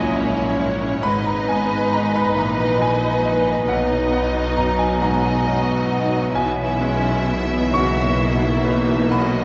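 In a rubato 6/8 lilt, this hopeful, uplifting cinematic orchestral cue sets a lush, vibrato-rich violin section singing the melody over a second violin line, with a bright, intimate grand piano (its action noise audible) and portamento-laden violas in accompaniment, smooth-topped French horns holding chords in the background, and rich cellos and double basses grounding the bass, all bathed in a long church reverb and heard through worn, warbling old cassette tape that dulls the highs in this short fragment cut from a longer piece.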